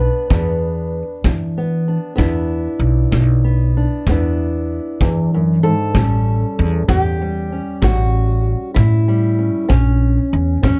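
A fingerpicked, ladder-braced acoustic guitar with boxy, woody old strings carries the melody up front beside a thumpy gut-string upright bass from the start, and a distant, roomy kick drum played with brushes joins at 0.3 seconds in this soulful, swaggering acoustic country blues excerpt at 64 BPM in a straight 12/8, moving from E7 (third omitted) to A7 at 5.9 seconds and A#dim at 9.7 seconds under light reverb and a dark production.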